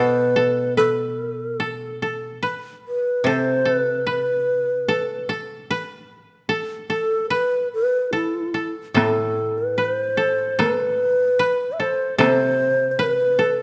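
In a rubato 2/4 at 74 BPM, this calm, austere Japanese chamber excerpt sets a breathy, hollow shakuhachi melody up front, close and soft-attacked with a straight tone. Beneath it, one mellow, woody koto plays a fingerpicked second line while a second, brighter koto supplies low accompaniment that drops out at 5.7 seconds and returns at 8.9 seconds. At 9.0 seconds a taiko ensemble enters with heavy sticks for a brief stretch, and the whole piece sits in a moderate recital-hall reverb.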